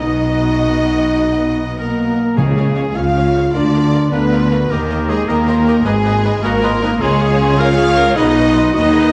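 A lush orchestral passage rings in the wet reverb of a scoring stage, cut from a longer cinematic piece with an adventurous, heroic mood in a straight 12/8 feel. Up front, a mellow French horn section holds sustained chords, while a warm, close violin section carries the expressive, vibrato-rich melody. Beneath them, a rich, distant double bass section and a soft-attacked cello section in the background anchor the bass, and an intense viola section with a smooth top fills in the accompaniment. A clear, roomy oboe and a punchy, present clarinet each play a second line, joined by a very quiet chamber violin section. Calf-head timpani strike a single dry note from 2.4 to 2.9 seconds as the harmony moves from Cb to Db.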